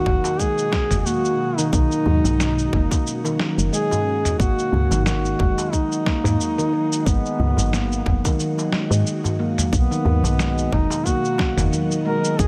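A tight electronic kick and a gritty, tape-warm sampler kit of cabasa, snare and toms set a swung 90 BPM pulse in 4/4, joined by a crisp metal-shelled darbuka in the background, for this meditative, mystical organic downtempo excerpt moving from B to G#m7 at 4.4 seconds and back to B at 9.7 seconds. Up front, a mellow duduk sings a folk-style melody with vibrato and scooped notes through tape echo, while a ringing stainless-steel handpan plays bright arpeggios with delay over a round, woody FM bass. Behind them an ethereal, detuned pad holds sustained chords, colored by ensemble chorus, phaser and sidechain pumping, all within a light digital ambience.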